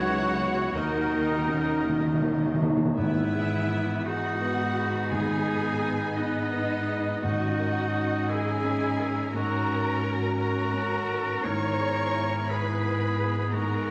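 A sorrowful, moving orchestral film cue in a rubato 6/8 at 57 BPM opens with a very quiet, lush violin section carrying the melody over a clear second violin line, a vintage-toned solo oboe, a brief bright flute group that stops at 2.6 s, a felt-muted upright piano and smooth violas in the background, mellow French horns holding sustained chords, and cellos with expressive portamento alongside focused double basses, while close, dry timpani enter at 0.7 s with a fill before the harmony moves onto E/G# at 3.0 s, all set in a wet scoring-stage reverb.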